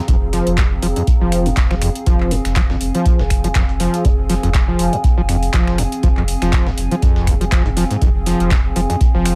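Trippy and driving, this acid house excerpt runs at 121 BPM in 4/4 with a light 16th-note swing, sitting on a single F minor chord throughout its 9.4 seconds. An overdriven acid bass riff sits up front, squelchy and resonant, with a sawtooth bite, a filter sweep, analog chorus and digital delay, all pumping against the kick. Beneath it, a saturated triangle sub bass holds a deep, thick F1, while a deep, tape-warm electronic kick drives the pulse until 9.1 seconds. An electro analog drum machine adds finger snaps, handclaps and metallic hats, and a dusty sampler-style kit of compressed hi-hat and medium-tuned snare, re-recorded in a small room, sits gritty in the background. Over it all drifts a warbling, nostalgic lo-fi pad, detuned and mellow, colored by chorus, phaser and its own reverb, with a slow attack and long release that pumps with the sidechain, all inside a light reverb.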